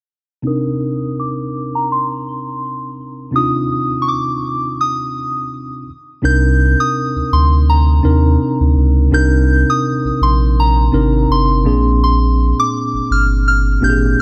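Sensual and longing, this slow R&B excerpt at 83 BPM in C minor opens with a worn, slightly out-of-tune tine electric piano playing Cm9 chords under a low-pass filter sweep, while a soft, pure FM synth bell sings a high melody through chorus and tape echo, and a deep, round sub bass arrives up front at 6.2 seconds as the harmony moves from Cm9 to Bb9 in light reverb.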